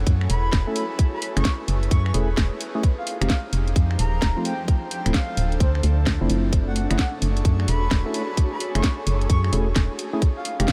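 UK garage in a moody, bouncy two-step groove at 130 BPM in F# minor, cut from a longer piece, where a tight, up-front electronic kick and a garage kit with a cracking snare, hi-hat and finger snaps swing over a hollow, dark organ-like FM bass, while an airy, bright pad pumps with sidechain under a breathy, flute-like synth lead with vibrato and delay from 0.3 seconds, a percussive organ stab sits in the background from 0.7 seconds, and a cloudy, blurred granular pad drifts behind it all through F#m7, Fm7 and Dm7 chords in light digital ambience.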